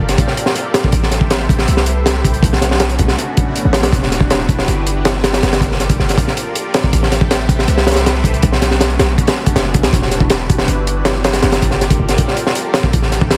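Heavily compressed with a radio-like squeeze, light reverb and small-room ambience, this frenetic yet atmospheric drum and bass and jungle fragment at 160 BPM in 4/4 pairs a warm, boomy, sine-based 808-style bass with a noise layer, a fast attack and a decaying tail, sitting between E1 and D2 from the opening, with a crunchy, saturated, gritty breakbeat kit that arrives at 0.1 s up front, dark and rolled-off on top, its hi-hat, tight kick and high-tuned snare carrying the energy through to 13.4 s.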